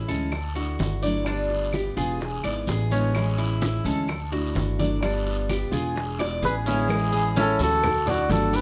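This danceable Cuban son and guajira groove, cut from a longer piece, opens with a full-bodied picked steel-string acoustic guitar, a metallic Cuban tres rippling arpeggios on its double strings, and a dark, thumpy gut-string upright bass played pizzicato up front. Behind them sit bright low-tuned congas, round bongos and cowbell, woody claves and grainy maracas, joined by a raspy guiro, all set in light reverb and caught by close, detailed microphones. During a drum fill that begins at 6.2 s, a soft, breathy cup-muted trumpet takes a veiled, jazz-style solo up front from 6.4 s with light vibrato, while a small, fingerpicked nylon-string guitar adds a quiet second line in the background.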